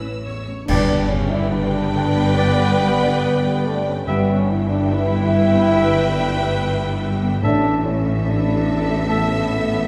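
Cinematic, emotional film-score music for orchestra, uplifting and moving, unfolds with a rubato feel in this fragment of a longer piece. A lush violin section carries the smooth, even melody high above an expressive second violin line, while a felt-muted upright piano adds a soft, intimate accompaniment with audible action noise, alongside a focused viola section and a very quiet, ringing, fingerpicked concert harp playing arpeggios. Cello and double bass sections anchor the low end with smooth-topped, intense bowing, and a dark, roomy French horn section joins at 0.7 s with sustained chords. At the same moment a bright solo oboe, a distant clarinet and a pure, hollow small flute group add second lines. Dark clash cymbals with concert bass drum mark an accent at 0.7 s and sound until 2.3 s, and timpani on calf heads sound through 5.3 s, all within the generous, wet reverb of a scoring stage.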